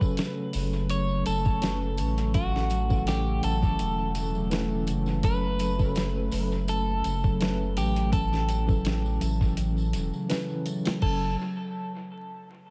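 This trip hop excerpt moves at a dark, smoky 83 BPM in F# minor, with a slight 16th-note swing and a chord cycle that alternates between F#m and A. A gritty, compressed sampler-style drum kit sits up front, its thumpy kick, medium-tuned snare, hi-hat and crash all soaked in dub echo. A round, deep analog bass joins at 0.5 seconds, also up front. Behind them, a saturated tambourine and triangle add faint color. A mellow, clean tine electric piano carries the accompaniment with tremolo. A bright, fingerpicked concert harp rings out arpeggios in the background, and a moody, detuned analog pad with chorus holds sustained chords from 0.3 seconds. On top, a twangy, slightly broken-up electric guitar plays the melody through spring reverb and dub echo. The whole thing sits in an echo-heavy mix with light reverb and a layer of vinyl crackle, and it shifts into a new section at 11.0 seconds.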